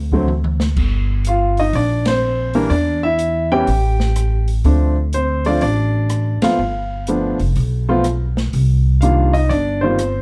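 An upright bass sounds first, joined almost at once by a grand piano and an acoustic drum kit whose short fill leads into the opening chord at 0.8 seconds. This relaxed, sophisticated jazz piano trio swings in four, moving through minor-seventh harmonies toward a dominant chord before arriving on a final minor seventh. The piano carries the melody up front with a short sustain, and the pizzicato bass on steel strings has a woody tone that also sits forward. The drums sit lower in the mix, with an airy, polished small-room character, dark cymbals, a medium-tuned snare and a boomy kick, and the whole band hits accents at 2.0 and 6.4 seconds. Light reverb and a dark, warm production give this excerpt of a longer performance an intimate finish.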